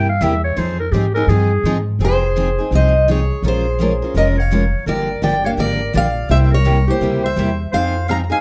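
Swinging eighths at 168 BPM in 4/4 drive this virtuosic, bittersweet jazz manouche excerpt in F minor: a raspy, growling clarinet solos over the woody, thumpy pizzicato upright bass and two bright picked acoustic guitars until a third guitar takes the melody at 2.0 seconds with a slapback echo, all inside a moderate club reverb as the chords move from Fm7 through Bbm7 and Gm7 to C7.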